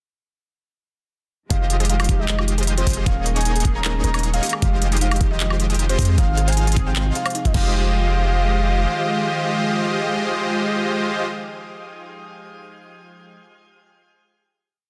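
Huge, detuned supersaw chords carry tape-tinged, throbbing held pushes over a deep, sine-like 808-style bass and a knocking electronic kick in this emotional, dreamy future bass piece at 154 BPM in F minor with a half-time feel, where a round, octave-layered synth lead sings a repeating riff melody with vibrato, glassy digital keys and a punchy unison pluck arpeggio sit in the background, a very quiet symphonic string section holds smooth chords, and a crisp pop drum kit with hat rolls, claps, woodblock and crash drives the drop from 1.5 to 7.7 seconds before a final hit rings out in digital ambience on a dense, heavily limited master.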